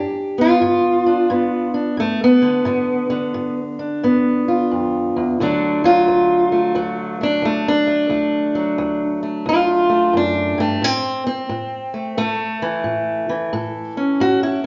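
A fingerpicked steel-string parlour guitar carries this rollicking, gritty slice of acoustic country blues on its own from 0.0 to 14.7 seconds, its tone dark and boxy and sitting up front in the mix. The playing moves at 88 BPM in 4/4 with a loping swing on the eighth notes, spanning from D2 up to A4 in D major, with the instrument tuned to A4 = 441 Hz. The harmony opens on G, slips through G#dim7 at 2.7 seconds, settles on D at 5.4 seconds and turns to A at 10.8 seconds. A generous large-studio reverb with a 1.3-second tail surrounds the guitar, giving the feel of a live performance in one room, while the top end is rolled off above 7.6 kHz. This short passage is cut from a longer piece.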